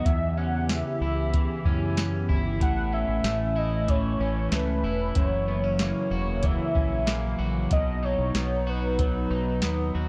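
A dark, lightly reverberant dream pop excerpt at 94 BPM in A lydian floats blissfully over Em6, A, F#7 and B chords, with a velvety, detuned sawtooth synth lead singing the melody through chorus and digital delay, a hollow, flute-like pad sustaining airy chords, a twangy electric guitar at the edge of break-up picking chorused, delayed arpeggios, a round, deep dub fingered bass, and an up-front vintage rhythm box with a deep kick, tonal snare, metallic hats and tambourine entering at 0.1 seconds.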